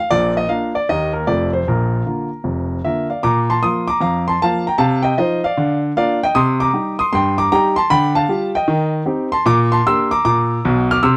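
A clear baby grand piano opens this playful, exuberant stride jazz excerpt on its own, swinging its eighth notes at a brisk 154 BPM in 4/4 and Bb major. Through the first 3.2 seconds the harmony moves briskly from Bb through Eb and F back to Bb. A second passage then runs to 11.2 seconds, passing through Cm, G5/D and Cm/Eb before settling on Gm/Bb. The solo piano spans a large range, from the deep bass at F1 up to F6, and its natural tone has a short sustain that keeps each note crisp. Placed up front in a dry, close 1970s-style studio sound with light reverb, the instrument feels intimate and immediate.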